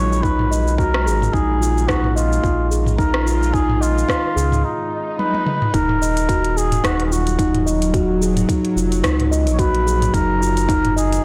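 A cup-muted trumpet carries the melody throughout, its soft, veiled tone played in a classical style and trailed by tape echo. This is meditative organic downtempo in Eb minor at 109 BPM, a 4/4 groove with a light sixteenth-note swing, cut from a longer piece. A steel tongue drum struck with rubber mallets rings out pure, mellow arpeggios through a delay. A round, deep analog bass sits up front with transformer saturation and sidechain pumping, while a bright, string-like drone with vibrato hovers in the background on slow-attack sustained chords. The produced electronic kit offers crisp hats, rim clicks, shaker and toms, with clipping on the snare, alongside a tight electronic kick, both re-recorded in a large room. A break arrives at 4.6 seconds, bringing an electronic swell and a drum fill that lead into the second section at 5.7 seconds, where the harmony moves from Abm7 and Bb7sus4 to Ebm7 and Gbmaj7, and the whole mix sits in a moderate echo chamber with a blown-out, overdriven sound.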